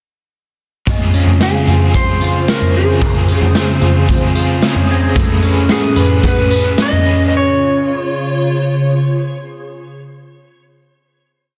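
At 0.9 s, a blissful, dreamy dream pop piece in Db major begins at 111 BPM with uneven beats. A gritty, up-front garage drum kit of punchy kick, snare, toms and tambourine arrives together with a hollow, flute-like pad, a crunchy double-tracked guitar strumming eighths with tremolo, a dark lo-fi electric guitar fingerpicking arpeggios through lush chorus and digital delay, and faint FM chimes scattered in the background. A clean lap steel enters at 1.4 s with slide call phrases over Dbmaj7, and from 5.2 s the music slows as the harmony moves to Amaj9 and lands on Db, with the warbling pad sustaining to the close inside a moderate scoring-stage reverb and a dense, heavily limited master.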